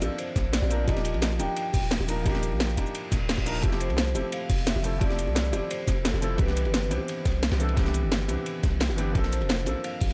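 A lush, uplifting stretch of liquid drum and bass opens on a felt-muted upright piano with soft, intimate tone, audible action noise and vintage sampler grit, beneath a ringing vibraphone melody carried on dub echo, over a deep, sine-like 808-style bass and maj9 chords. Drums fill out the groove: an up-front layered kit with a cracking snare and metallic hats, a dark, saturated breakbeat kit with dark cymbals, very quiet high-tuned bongos, and a knocking electronic kick that enters at 0.4 seconds. A brief electronic reverse cymbal sweeps in at 3.1 seconds, and light reverb gives the whole mix a gentle sense of space.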